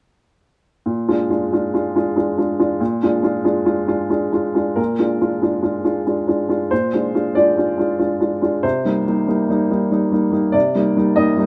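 Unfolding in a loose, rubato three-beat metre, this short cut from a longer neoclassical minimalist piano piece feels wistful and reflective. A solo upright piano carries everything from 0.9 to 11.5 seconds, ranging from Bb2 up to Eb5 and sitting up front with a woody, boxy tone and short sustain. The harmony opens on a Bb7 chord and later moves to Cm7 at 8.6 seconds, after the music has shifted into a second section at 4.8 seconds. A light reverb gives the room a gentle sense of space. The instrument is tuned slightly below standard pitch, with A4 at 439 Hz.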